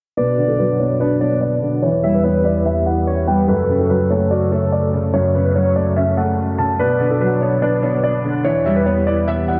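Hip hop in a half-time feel, tense and ominous, this short excerpt sets a dark concert grand piano carrying the melody, boxy and deep in the bass with analog delay, over a felt-muted upright piano whose intimate accompaniment keeps its audible action noise. A round, octave-layered synth lead with vibrato traces a second line while a detuned, wave-folded analog pad holds slow-attack chords beneath, and a filter sweep runs through the whole passage. The chords move from Bm through Em and F#m, and the mix is dreamy, soaked in plate reverb.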